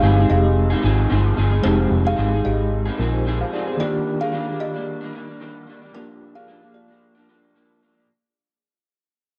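A round, punchy, foam-muted electric bass, a slightly broken-up, lo-fi electric guitar through a small old amp with chorus and vibrato, a reedy, worn, slightly out-of-tune electric piano shimmering with fast tremolo, and a woody kalimba second line with a thumbnail pluck, chorus and delay all begin together in this mellow, hazy bedroom-pop snippet at 112 BPM in F dorian with a light 16th-note swing, moving through Fm7, Ebmaj7 and Gm7 under a cassette-tape sheen and plate reverb while fading out throughout, the bass dropping away at 3.4 seconds and the kalimba at 6.9 seconds.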